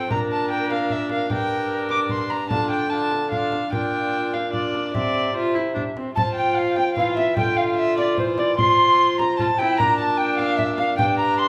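Renaissance-style consort dance in a festive, stately 3/4 at 149 BPM, cut from a longer piece, where a dark, nasal gut-string violin carries the melody up front over a pure, wooden alto recorder second line with expressive vibrato, a reedy period-style viola accompaniment, a mellow, distant bassoon bass and a small, bright frame drum kept close and dry, the ensemble set in a wet recital hall, as the phrase passes through Bb, Gm, Dm and C before a second statement from 6.2 seconds opens on Fmaj7sus2 and settles back to Bb.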